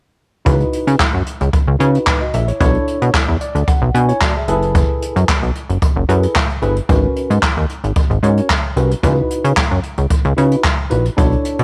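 A straight 4/4 groove at 112 BPM drives this danceable, funky slice of early-eighties boogie funk in C# minor, with a brushed jazz kit of boomy kick, medium-tuned snare, hi-hat and handclaps sitting up front in a small, acoustic room. A punchy, plucky analog bass with a fast-attack filter snap carries the low end, while a worn, slightly out-of-tune tine electric piano comps through lush minor-eleventh chords (C#m11, Bm11, F#m11, G#m11) and adds a brief fill from 3.1 to 4.8 seconds. Light reverb gives the cut from a longer piece a close, intimate feel.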